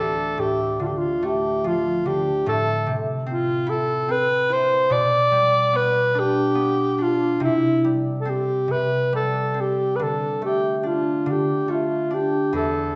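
A reverberant recital-hall sound, as if captured in a church or concert hall, surrounds this mournful, haunting Celtic slow air, cut from a longer piece. A mellow alto saxophone carries the melody up front in a classical style, with light vibrato and a smooth top, while a fingerpicked concert harp rings beneath it in a lower register, also close at hand. The 6/8 is played with a free, rubato feel, moving from minor chords toward open fifths at the close.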